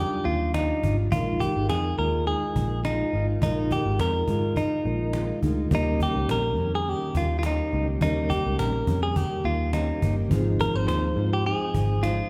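This hazy, nostalgic indie pop and bedroom pop clip in Eb major opens with several parts at once. Up front, a bright, twangy electric guitar carries the melody, recorded direct, picked and compressed. Beneath it sit a fingerpicked steel-string acoustic guitar with a vibrato effect, a mellow tine electric piano heard through its built-in speakers, and a dark, round, foam-muted electric bass. A snappy cajon played with soft hands joins at 0.3 seconds, setting a 104 BPM pulse in 4/4 with a light swing on the sixteenths. The full-bodied jumbo acoustic and the clean electric piano stay in the background, filling out the harmony as it moves from Ebmaj9 through Bb7sus4 and Eb7 to Ab6. The ensemble sits in the moderate reverb of a church or concert hall, tuned slightly below standard pitch at A4 = 435 Hz, in a passage cut from a longer piece.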